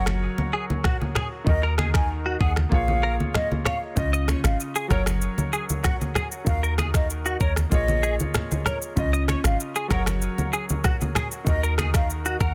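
A dry, dense and heavily limited mix opens this sunny, romantic afrobeats excerpt, with a break through its first 4 seconds as the chords move from Gb through Ebm, Bbm7 and Dbadd9. A close-miked silver concert flute carries the tongued melody with a pure, hollow tone, vibrato and digital delay over a clear, worn grand piano, while a deep, round log drum bass hits with a dark, decaying FM punch. An up-front electronic drum kit brings a knocking kick, finger snaps, rim click, shaker and a softly clipped snare, joined by bright, low-tuned congas in a small room and a twangy, compressed clean electric guitar riff with chorus and delay from 0.5 seconds.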